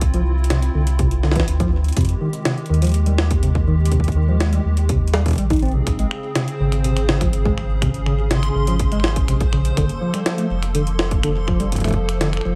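Melancholic and glitchy, this IDM excerpt moves at 123 BPM in a straight 4/4, drifting through minor-ninth chords from Dm9 to Fm9, Bbm9 and Gm9. A hollow, flute-like pad with a warbling, vintage character holds sustained chords under ensemble chorus. Beneath it sits a deep, round sine sub bass placed up front. A heavy electronic kick carries the beat alongside a gritty, pitched-up sampler-style jungle kit of finger snaps, hi-hat and a high-tuned snare, overdriven and treated with digital delay and small room ambience. A clean tine electric piano plays arpeggios through chorus and delay, and at 6.6 seconds a reversed, granular texture enters, swelling with a bright, dreamy shimmer under its own reverb, while the whole mix sits in light reverb.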